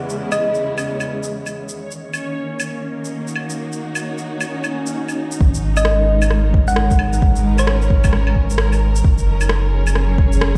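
Melancholic and ghostly, this future garage excerpt at 132 BPM in G# minor sets lush, bowed symphonic strings with sidechain pumping and a dreamy reversed swelling texture beneath a tine-like thumb-piano synth pluck coloured by chorus, 12-bit sampler grit and digital delay, while overdriven electronic shaker, claves and rim click carry a 62% swing on 16ths and are joined at 5.4 seconds by a deep overdriven kick and a round, tube-saturated dub sub bass, the whole mix heard through the stone-room reverb of a bare space on a big sound system.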